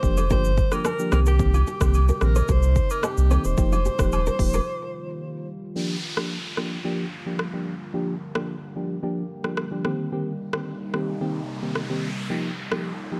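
A smooth, sultry afrobeats excerpt opens with a vibrato-rich, pop-style alto saxophone solo over a warbling, vintage FM electric piano, a moody, detuned ambient pad in the background, a round sine sub bass, and a produced electronic drum kit with a deep kick, smooth hats, rim click and shaker up front. A fingerpicked nylon-string guitar riff with delay and finger squeak sits behind them, alongside small-room agogo bells and woodblock, until bass, guitar and percussion drop out around 4.7 seconds for a break. From 5.8 seconds the electric piano, pad and drums carry on under a filter sweep, while an electronic downlifter and noise sweep enter the mix.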